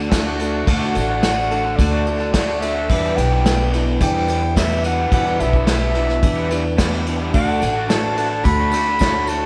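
A mellow, smooth-topped clarinet carries the melody over woody, boxy picked archtop guitar, a bright double-tracked overdriven garage guitar riff, dark pizzicato upright bass, a soft brushed drum kit up front, a very quiet flute-like tonewheel organ with slow rotary, a jingly tambourine and a reedy, fast-tremolo electric piano entering at 7.3 seconds, giving this jangly, nostalgic folk-rock and heartland-rock excerpt in D major at 108 BPM a worn, warbling cassette-tape character in light reverb.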